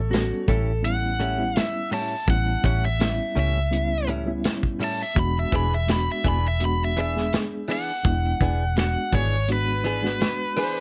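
A dark, sliding lap steel opens this swaggering, rollicking soul blues excerpt at 83 BPM over a round, foam-muted bass, with the steel dropping out by 0.8 seconds and returning briefly at the very end. A tight, punchy soul kit with a rolled-off top and a reedy electric piano with fast tremolo carry the accompaniment, while a clean, direct guitar with lush chorus adds stabs over A7 moving to E7 at 5.2 seconds. From 0.9 seconds a bright, overdriven, compressed lead guitar takes the melody up front, all set in light reverb.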